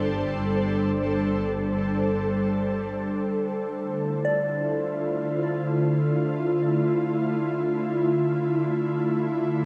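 An ethereal, airy pad of detuned chorused voices sits up front in this reflective ambient passage. Behind it, a soft FM synth bell picks out arpeggios high above, and a dark, woody bowed double bass section sits distantly beneath until 2.9 seconds. The harmony moves from Gsus4 to Dm at 3.0 seconds, and the whole piece is bathed in a lush hall reverb and the warbling pitch drift of worn cassette tape, giving this fragment of a longer work a spacious, reflective glow.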